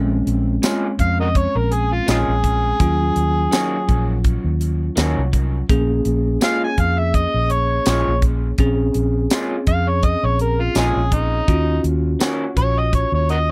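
A gritty, overdriven harmonica carries a smoky, brooding soul blues melody from 1.0 seconds, with tongue slaps and scooped notes, over a dark, round, foam-muted electric bass, a tight funk drum kit with a high-tuned snare and tambourine, twangy guitar stabs from a small old amp with tape echo, and a bell-like tine electric piano, all in a dry, close 1970s-style studio sound.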